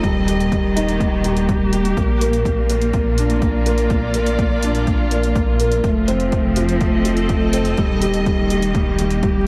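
A luminous, hopeful piano-and-strings electronica piece opens with every part sounding at once: a felt-muted upright piano, a rich studio string section, a detuned saw bass and an electronic kit. Cut from a longer piece in straight 4/4, it moves through Eb, Bb and F7 before returning to Eb near 7.8 seconds. Up front, the piano plays a mellow, intimate riff with thick felt, audible action noise and a vintage character, and a delay trails its notes. Beneath it, the bowed strings hold sustained chords with soft attack and expressive vibrato, pumping against the sidechain alongside a deep, rumbling bass whose beating sawtooth tone is saturated and dark. An overdriven electronic kick hits with a punchy, layered sound, paired with a quieter overdriven hi-hat, both in small room ambience; the drums stop at 9.3 seconds while the piano, strings and bass carry on until 9.5. Light reverb gives the whole mix a small-room feel.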